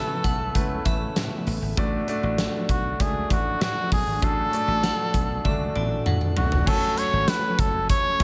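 Light reverb and a small room ambience frame this glossy, uplifting clip of 1980s-style pop, cut from a longer piece and set in a straight 4/4. A cup-muted trumpet carries the melody up front, its soft, veiled tone shaped by vibrato and scooped notes. Beneath it, a clear concert grand piano with audible action noise, deep bass and long sustain plays the accompaniment, while a very quiet, silky string machine holds vintage, warbling chords with a slow attack. A crystalline FM synth bell, chorused and delayed, traces a second line in the background until 6.6 seconds. A huge arena kit with a fat snare, punchy kick, tambourine and gated reverb enters together with a dry, foam-muted thumbed slap bass at 0.2 seconds, and the drums roll through a fill from 5.4 seconds into a new section where the harmony turns from Aadd9 and D to F#madd9.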